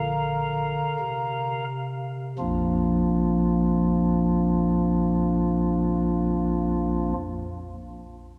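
Classical chorale-style music for solo pipe organ, this short fragment cut from a longer piece carries a serene, reverent mood in a triple metre with a freely flexible, rubato pulse. The organ's stopped flute voice sits up front, soft and hollow with a mellow, baroque voicing, a small chiff at the start of notes and a tremulant lending it a faint waver. Its register stretches from deep bass pipes up into a high treble. The piece opens on a Bb chord and slows through its first phrase, then moves into a second passage at 2.4 s. A wet church reverb with a long tail surrounds the organ, giving a sense of being heard from further back in the room.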